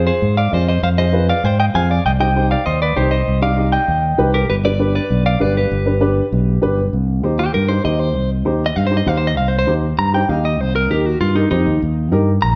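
Driving, fiery Latin cumbia at 196 BPM in straight 4/4, where a picked, compressed clean electric guitar carries the melody up front through spring reverb and slapback echo before taking a solo at 6.9 s as the music settles into C minor, over a woody, mellow dark upright piano accompaniment and a direct, amped fingered electric bass, all set in a large studio room heard from further back, with chords moving from Fm through Cm and G to Eb in this brief fragment of a longer piece.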